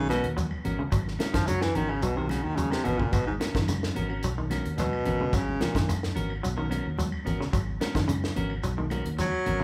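A warm, vibrato-laced baritone saxophone opens this hypnotic, funky afrobeat excerpt in G# minor at 109 BPM, soloing up front until 5.9 seconds and returning briefly at 9.2 seconds, over a round fingered electric bass and a clean guitar playing fingered arpeggios. A second, picked clean guitar adds stabs, while a tight funk drum kit with a high-tuned snare sits up front, and damped congas, a grainy shekere and distant woody claves stay in the background. The band plays live in one room with moderate large studio reverb, holding a single G#m11 chord throughout.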